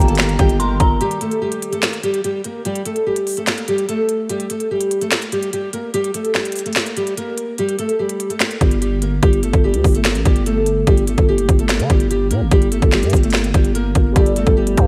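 A full-bodied, fingerpicked steel-string acoustic guitar carries the melody up front throughout this melancholic, hard-hitting trap excerpt in G minor, set at 146 BPM with a half-time feel and touched by subtle chorus and tape echo. In the opening second, an eerie, inharmonic synth bell with chorus and tape echo adds a second line high above. A nasal, detuned analog pad holds sustained chords in the background, and a mellow concert grand piano with analog chorus accompanies beneath it. A growling, buzzy 808-style bass also sounds in that opening, then drops out at 1.0 seconds, when the bell and pad fall away and the piece moves into a sparser break carried by the guitar and the drums. The electronic trap kit stays up front the whole way, with an overdriven, hard-clipped kick, a sharp snare, crisp hi-hats and finger snaps. The 808 returns at 8.6 seconds, and the piano slips back in at 14.1 seconds, all within a light reverb.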